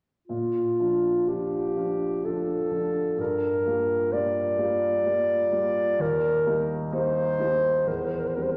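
Bathed in a wet concert-hall reverb, this brief excerpt of a lyrical, serene Romantic duo in Bb major, tuned to A4 = 442 Hz, places a dark, close-miked clarinet up front singing the melody between F4 and D5 over a warm concert grand piano with a deep, open bass, both playing from 0.3 to 8.6 seconds at a rubato 64 BPM in 3/4 as the harmony moves from Bb through Gm7 and Eb to C/E.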